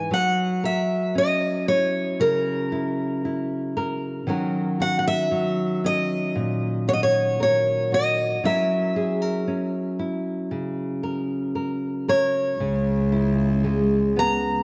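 A picked steel-string acoustic guitar carries the melody up front in this melancholic, intimate acoustic folk-pop ballad, its fresh strings giving a bright dreadnought ring. Beneath it, a dark classical nylon-string guitar is fingerpicked as accompaniment, also up front, with finger squeaks audible in its lower register. The tempo is a slow 58 BPM in a straight 4/4, and the tuning sits slightly below standard at A4 = 437 Hz. The harmony moves from F#7 to D#m7, back to F#7, and then to C#m7. At 12.6 s a single bowed cello arrives on a low bass note, played sul tasto with a soft attack, airy bow and light vibrato for an intimate, close presence. The whole excerpt, cut from a longer piece, sits in a wet echo chamber reverb with a long 2.5 s decay.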